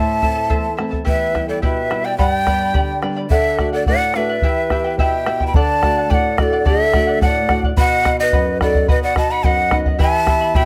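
Andean folk in a festive yet wistful mood, this short excerpt sets a breathy, end-blown wooden quena with vibrato up front on the melody over a second line from cane pan pipes with a crisp chiff, while a shimmering fingerpicked charango and a dark, boxy thumb-plucked flamenco guitar supply accompaniment and a deep, dry bombo enters at 0.2 seconds, all in a close, detailed sound with light reverb.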